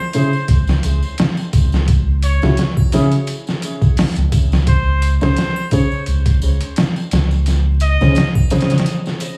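A breathy, nasal trumpet with a straight mute carries the jazz-style solo melody with vibrato and tape echo over a hypnotic, smoky trip hop groove cut from a longer piece. A soft, felt-muted upright piano adds intimate accompaniment with tremolo and its own tape echo, while a deep, round dub sub bass and a gritty, pitched-down boom bap sampler kit with a thumpy kick sit up front, and a distant tambourine and triangle shimmer quietly behind. The whole track has a heavily compressed radio sound with vinyl crackle and small room reverb, and the drums and percussion carry on alone through a brief break from 8.9 seconds to the end.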